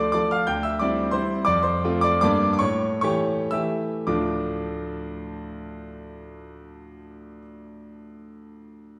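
Dotted rhythms drive this romantic triple-time dance in 3/4 and D minor, a wistful, capricious classical fragment cut from a longer piece, its rubato tempo ranging between 99 and 191 BPM and slowing down from 1.0 to 4.1 seconds. A solo concert grand piano sits up front, clear and smooth with a deep bass and a vintage tone, spanning D2 to G6 as the harmony moves through C over D, F, G minor and A7 before settling on D minor at 4.1 seconds, where a new section begins. The playing is bathed in the wet reverb of a recital hall with a 1.7-second decay.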